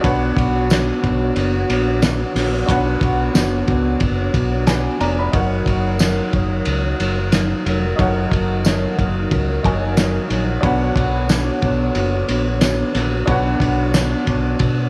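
The rhythm sits at a laid-back 91 BPM in 4/4, with a light swing on the sixteenths driving this hazy stretch of indie bedroom pop cut from a longer piece. Up front, a cloth-damped, thuddy drum kit of kick, snare, hi-hat and ride sounds muffled and gritty, with a fat snare, tight kick and dark, rolled-off cymbals, joined by a round, punchy fingered electric bass and a jingly tambourine tucked in the background from 0.7 seconds. A mellow, clean electric guitar carries analog chorus and a warbly pitch drift, while a worn, woody upright piano, slightly detuned and given a cassette-tape colour, fills in the accompaniment. Behind them, a distant, soft-attacked French horn section holds sustained chords in a classical style. The harmony moves from Bmadd9 to F#6 at 5.3 seconds and back to Bmadd9 at 10.6 seconds, all wrapped in a moderate echo chamber reverb that lends a roomy glow.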